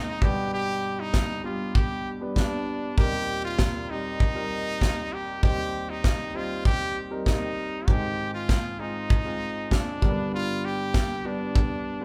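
This is a piece of piano-driven pop at 98 BPM in 4/4 with a straight feel, set in Eb major and carrying an anthemic, hopeful mood. A brilliant, forceful trumpet carries the solo melody between D4 and G4 in a close-miked pop style, its vibrato sitting up front. A warm grand piano accompanies throughout, reaching from Eb2 to D5 with a present, polished tone and long sustain. An acoustic studio drum kit enters at 0.2 s and stops at 11.7 s, playing kick and snare with an airy quality, a punchy kick and a medium-tuned snare placed up front. The band plays live in one room with moderate large-studio reverb, while the chords move from G to Eb6, then Ab, and back to G across this short excerpt cut from a longer piece.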